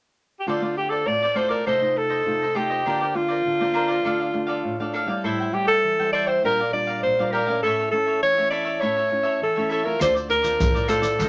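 Samba and choro in D minor at 101 BPM, this short cut from a longer piece feels nostalgic yet lively. A breathy alto saxophone carries the melody up front from 0.4 seconds, its clear, smooth top and jazz-style vibrato singing over the harmony. Crisp, picked cavaquinho and a dark, small-sounding fingerpicked nylon-string guitar accompany it through a progression that moves from Dm7 through F7/C, Bbadd9/D, Am7 and Gm7/Bb to A. At 10.0 seconds the music turns back to Dm7 as a gritty, barky overdriven tine electric piano enters on bass, its bright tone pulsing with medium tremolo through a combo amp. Tight surdo, maracas and pandeiro join at the same moment, sounding acoustic and close in a small room, with a moderate studio reverb surrounding the ensemble.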